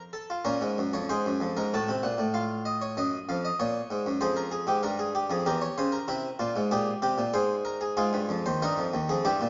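A solo harpsichord opens this short, joyful passage cut from a longer baroque-style fugue in three voices, moving in a lively triple metre with a straight feel. The instrument is Italian in style, its plucked tone brilliant and thickened by octave strings, and it sits up front while spanning from Eb2 up to F#5. The harmony moves through darker chords, an Am6 and an F7/A, then a diminished seventh and a C7 before settling onto an Abadd9 and Ab, where a new section begins at 8.0 seconds and runs to the close at 9.5 seconds. A wet recital hall reverb surrounds the playing with a lingering bloom, and the top of the sound is gently capped, keeping the brilliance from turning harsh.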